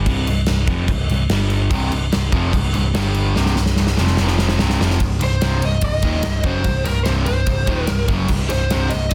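Dense and heavily limited with a light small-room reverb, this menacing, driving hard rock fragment in C minor charges along at 146 BPM, with an up-front gated 80s drum kit of punchy kick and bright cymbals, a growly picked electric bass, and an overdriven hollow-body guitar riff, thickened at 1.7 seconds by a scooped, high-gain distorted guitar riff; a drum fill at 3.4 seconds leads to a lead guitar melody from a small cranked amp at 5.2 seconds, overdriven and carrying a slapback echo.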